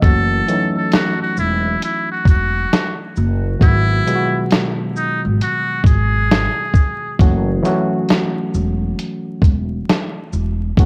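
Hazy and melancholic, this lo-fi hip hop excerpt in F# dorian drifts at 67 BPM with a swung feel, as a buzzy, breathy trumpet with metal mute sings a jazz-style solo melody until 7.2 seconds over a reedy, lightly overdriven electric piano coloured by cassette tape, a woody pizzicato upright bass with transformer saturation, and a gritty, thumpy sampler-style drum kit of kick, snare, hi-hat and shaker, all wrapped in light reverb and vinyl crackle on a home cassette recording while the chords move from F#m7 to G#m7 and back.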